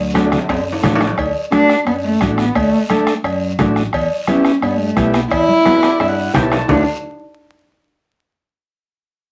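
A dark, woody cello opens this festive cumbia fragment together with fingered electric bass, the bowed, sul tasto line carrying the melody up front with a touch of vibrato, over an electric bass that sits direct and amped beneath it. Within a moment a vintage combo organ joins with reedy, overdriven chords, while congas with a bright, thin, damped skin, a raspy guiro, a soft-beaten bombo, and ringing metal-shelled cowbell and timbales fill out the danceable groove at a straight 174 BPM in 4/4. A drum fill marks the opening second, and the harmony in D major moves from D to E minor at 3.9 seconds before returning to D. Around 5.7 seconds another drum fill arrives alongside a transistor combo organ fill, pushing toward the next phrase. The dry, close percussion contrasts with the cowbell and timbales' live-room ring, all heard through a moderate small-room ambience and a layer of vinyl crackle, in a clip cut from a longer piece.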